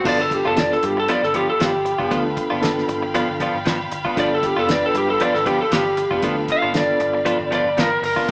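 A twangy, slightly broken-up lead guitar solos up front over a gritty, rollicking straight-eighth soul blues in G mixolydian at 116 BPM, backed by a barky electric piano with fast tremolo and overdrive, clean direct-recorded guitar stabs, a round foam-muted bass, a cloth-damped thuddy drum kit with a fat snare, and a dark, distant string section sustaining chords on G7, all caught live in one room with a large studio reverb and a small-speaker sound.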